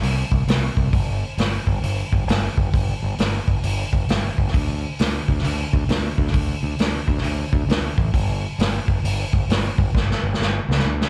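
Blues rock in a southern rock vein from a power trio, this driving, raunchy excerpt moves at 133 BPM with a swung feel, heard as a live club gig through the venue's PA. A growling fingered electric bass, overdriven and up front, holds the low end between G1 and D2 beside a vintage acoustic drum kit with a punchy kick, medium-tuned snare, hi-hat and a rolled-off top. The drums close things out with a fill from 9.9 seconds, and the cut ends at 11.1 seconds.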